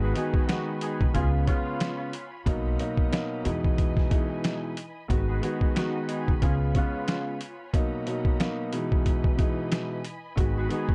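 A swung boom-bap groove from a gritty, pitched-down sampler kit with a thumpy kick enters at 0.2 seconds beneath a woody pizzicato upright bass, while a dark, mellow baby grand piano with cassette-tape coloring sits up front, a smooth horn section adds stabs touched by tape echo, and a lush bowed string section holds bright, vibrato-rich chords over seventh-chord changes in this moody hip-hop excerpt.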